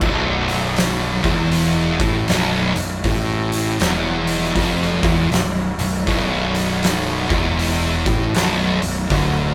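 Ominous and sludgy, this brief stoner and doom metal fragment moves at 79 BPM in a swung 4/4 on a single B minor chord, as two thick fuzz guitars grind out a low riff (one warm and up front, the other dark and set in the background) over a growly, bright, overdriven fingered bass, while an oversized low-tuned acoustic drum kit with a boomy kick, fat snare, crash and hi-hat sits gritty and forward in a pumping big room, the band captured playing live together with light reverb.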